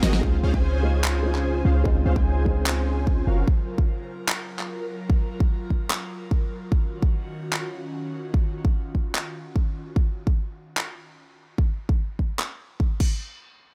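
A deep, boomy 808-style bass pumps up front through the opening seconds of this euphoric, lush future bass excerpt at 148 BPM in a half-time feel in Db major, joined by a punchy layered electronic kick and a pop kit with fat snare, handclaps, hi-hat and crash that opens on a drum fill, while a fat, detuned sawtooth polysynth riff carries a filter sweep from 0.2 to 3.5 seconds, a soft, boxy felt-muted upright piano with audible action noise sits in the background, and an airy, breathy pad with chorus and phaser sustains chords until 9.9 seconds, moving from Dbmaj7 to Gbmaj7 to Ebm9 in a dry, close mix.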